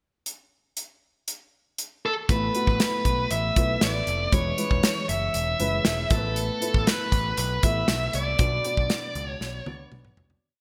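Nostalgic and glossy 1980s-style pop, where a punchy, up-front studio drum kit with a big backbeat opens on a pickup bar before a dark, distorted lead guitar with delay sings motif-based song phrases over a mellow baby grand piano with chorus pushing drop2 chords, a syncopated pop-funk overdriven picked bass with chromatic approach notes, bright digital production in a lush hall reverb, and a drum fill from 9.4 seconds as the whole piece fades.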